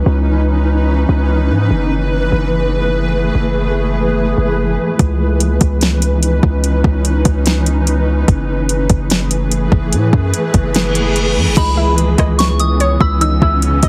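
Heavily compressed with a radio-like sheen and little reverb, this short cut from a longer atmospheric cloud-rap track feels hazy and ethereal at 146 BPM in a half-time 4/4 feel, in C# minor. A blurred, detuned granular pad sustains chords from the start, its slow attack and long release soaked in built-in reverb and pumped by sidechaining, while a deep, sine-toned 808-style bass holds long decaying notes up front beneath it. The harmony drifts between C#m9 and F#m11. At 5.0 seconds an electronic R&B drum kit arrives, overdriven and up front, with a soft kick, fat snare, metallic hi-hats, rim clicks and crash cymbal. A reverse cymbal sounds at 10.9 seconds into an impact, and from 11.6 seconds a pure FM bell melody, treated with chorus, phaser and digital delay, sits high alongside a warbling, lo-fi sawtooth pluck whose dusty noise layer, filter sweep and chorused delay add quiet arpeggios.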